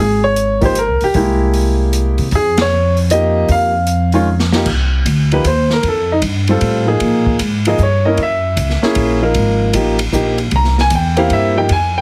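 Jazz piano trio in F minor, swinging in 3/4 at 154 BPM with a smoky, late-night mood, taken from a longer piece. A vintage-toned concert grand with deep bass carries the melody up front alongside a woody pizzicato upright bass, while an acoustic drum kit with dark cymbals and a boomy kick keeps time. The band hits an accent at 2.5 seconds, and the drums play a fill at 4.3 seconds before the piano takes a solo from 4.7 seconds. Light reverb and a heavily compressed, radio-like sound give the trio a close, dense feel.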